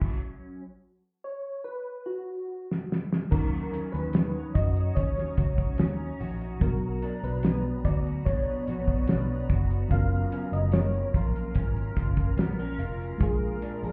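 A cloth-damped drum kit sits up front with a thuddy, fat snare, tight kick and dark, rolled-off cymbals, and a drum fill at 2.5 s leads into a fuller passage in this hazy, nostalgic stretch of indie and bedroom pop, cut from a longer piece, at an unhurried 73 BPM in a straight 4/4. From the start, a slightly broken-up electric guitar through a small old amp, lo-fi and compressed with analog chorus and vibrato, shares the accompaniment with a reedy, mellow electric piano that carries fast tremolo and a cassette-tape character from the background. A soft, round synth keys melody with gentle decaying notes, ensemble chorus and analog delay arrives at 1.2 s. At 3.3 s a vintage foam-muted fingered bass joins, dark and amped, alongside a barely audible jingly tambourine, while a shimmering, ethereal pad with an octave-up sparkle, slow attack and long release adds sustained chords soon after. 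The harmony moves through D#m7, Bm, F#maj7 and A#7, and the whole mix sounds muffled as if heard through a wall, with a modest club-like reverb lending a dreamy, faded warmth.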